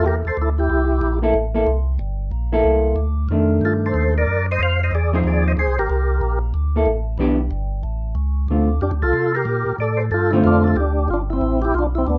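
A small room lends a short, moderate reverb to this greasy, bluesy soul jazz organ trio excerpt, swung in 4/4. A fat, lightly overdriven tonewheel organ with percussive key click, chorus vibrato and a slow rotary speaker carries the melody in short phrases, the first ending at 1.2 seconds, while a dark, clean hollow-body electric guitar plays fingered accompaniment until 10.7 seconds. Beneath them, a piping, scooped second tonewheel organ, also turning through a slow rotary speaker, holds the bass line throughout.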